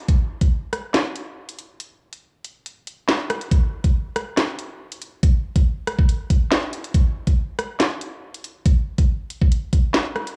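Tense and menacing, this hip hop excerpt at 140 BPM in 4/4 with a half-time feel features an electronic drill drum kit playing from 0.1 seconds, up front with its knocking kick, sharp snare, bright hats, rim click and handclaps, dropping into a break at 1.8 seconds, all set in light reverb and digital ambience with the warbling pitch drift of worn old cassette tape.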